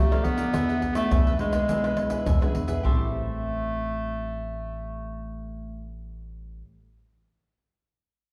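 A clear, distant-sounding clarinet carries a bittersweet yet lively samba-choro melody in A minor at 104 BPM, over a crisp picked cavaquinho, a dark, full-bodied fingerpicked nylon-string guitar, woody pizzicato upright bass and an up-front percussion group of tube shaker, pandeiro, tamborim and deep surdo that drops out at 3.0 seconds, all ringing in a wet recital-hall reverb across this short 6.7-second fragment cut from a longer piece.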